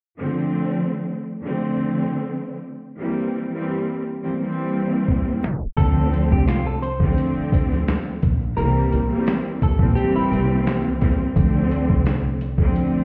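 Tough and dark, this boom-bap hip-hop excerpt in D minor moves at 86 BPM in 4/4 with a light 16th-note swing, cycling between Dm7 and C7. It opens on a lush, bowed symphonic string section, up front with vibrato and portamento, its cassette-tape color setting a brooding mood before a drum fill at 5.1 seconds and a tape stop bring in the groove. From 5.8 seconds the sampler-style kit settles into its beat with a thumpy kick, medium-tuned snare, handclaps and hi-hat, pitched down, compressed and gritty. A woody pizzicato upright bass on gut strings sits low underneath, while a clean, fingered semi-hollow electric guitar carries the melody through tape echo until 10.8 seconds, and a grainy egg shaker hovers very quietly in the background. The whole mix sounds muffled, as if heard through a wall, wrapped in stone-room reverb and small-room ambience.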